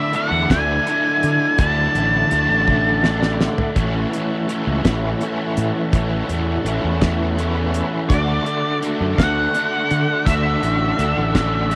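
Trippy and hypnotic, this psychedelic rock excerpt sways at a slow 55 BPM in 6/8, built on an overdriven, bright, double-tracked semi-hollow guitar riff through a rotary speaker, a round, punchy fuzz bass, and a dry, damped 70s drum kit with a fat snare and tight kick. Up front, a dark octave-fuzz lead guitar with tape echo carries the melody, falls away at 3.4 seconds after a drum fill begins, and returns at 8.1 seconds. Behind it all, a buzzy vintage combo organ with heavy vibrato holds sustained chords that move from Dsus2 through A6 to Dadd9, in a small room with light reverb.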